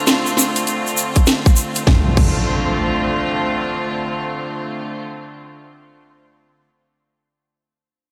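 Bright chamber strings open on a sustained Dm7 chord, carrying a vintage 12-bit sampler grit and a sidechain pump, in a playful, funky glitch hop cut at 100 BPM with a swung sixteenth feel. An overdriven drum kit with a cracking snare, bright hats and crash joins almost at once alongside a grainy tube shaker, and a tight, up-front electronic kick lands at 1.2 s before the drums drop out at 2.4 s. An electronic impact enters at 1.9 s and rings on past the strings, all set in a dreamy, lush hall reverb.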